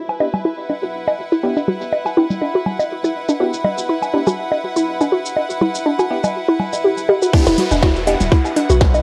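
A swung 4/4 minimal techno groove, cool and clinical, carries a deep, punchy sine sub bass and a reedy chamber string section with gut-string tone, both pumping, beneath a clicky, low-passed drum kit re-recorded in a large room, tape-echoed analog woodblock, bongos and congas, a crisp, wave-folded chord stab in the background and a hollow, nasal square pluck with chorus, while a filter sweep moves over a synth arpeggio sound, until a drop at 7.3 s brings in an overdriven, up-front electronic kick, a very quiet acoustic street-band kit with hi-hat and snare, and a downlifter, in a dry, gritty hardware recording cut from a longer piece.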